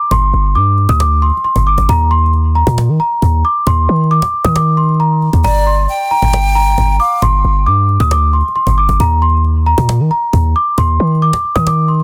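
Dry and densely limited, this menacing, dark half-time trap excerpt sets a bell-like celesta melody with digital delay over a deep, boomy 808-style bass and a woody, close cajon, while a breathy jazz flute with vibrato, also treated with digital delay, adds a brief expressive second line from 5.4 to 7.2 seconds.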